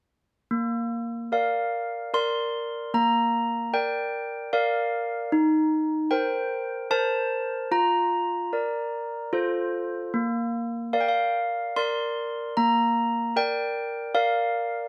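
In a straight 3/4 at 75 BPM, this dreamy, innocent classical lullaby in Bb major features solo handbells from 0.5 to 14.9 seconds, clear and ringing with hard clappers, sitting up front in a boxy small room with light reverb and spanning Bb3 to C6 as the harmony moves from Bb through Cm7/Eb and Bb/F to F before settling back on Bb, all within a short cut from a longer piece.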